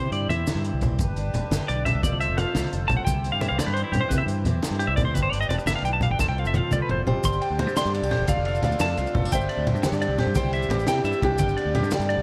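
Highlife guitar band music in a carefree, danceable 12/8 at 115 BPM in G mixolydian, where a twangy, chorused and delayed clean electric guitar solos up front over a round fingered bass, a gritty, saturated breakbeat kit with a high-tuned snare, background congas, grainy maracas, a boxy picked archtop, and a reedy accordion with light tremolo tuning, until a drum fill at 6.2 s leads to a fingerpicked steel-string acoustic guitar taking the melody from 7.1 s.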